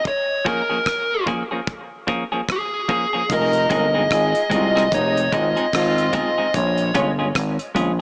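Dub reggae at 74 BPM in 4/4 with a swung sixteenth feel, spacious and deep, heard as a short cut from a longer piece through a small-speaker sound and a moderate echo-chamber reverb. A dark, fuzz-distorted lead guitar carries the melody up front with dub echo over a damped 70s kit of hi-hat, tight kick and rim click and a clean, scooped semi-hollow guitar, the opening break sitting on Bbm7 before moving to Fm7 at 3.3 seconds. There a growling FM bass, a smooth-topped horn section with light vibrato playing a second line, and very quiet low-tuned congas enter, with the chords returning to Bbm7 at 6.5 seconds.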